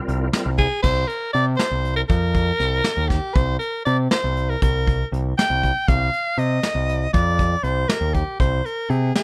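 This short excerpt from a longer piece has the rough feel of a home demo, set in studio reverb. It is a tense, driving progressive instrumental in an uneven 5/8 meter with a straight feel. A bright, reedy tonewheel organ with key click, chorus vibrato and a fast rotary speaker opens the piece on a C7sus4 chord, sounding only until 0.5 seconds. A growling, overdriven picked electric bass sits up front alongside a dark, small-room brush kit with a punchy kick, a medium-tuned snare, hi-hat, crash cymbal and a rolled-off top. From 0.6 seconds a raspy, gritty soprano saxophone takes the solo melody up front, with scooped notes, vibrato and a smooth, pop-style top. Underneath, the harmony moves through Gmadd11 over C and C minor, then settles on Ab over C.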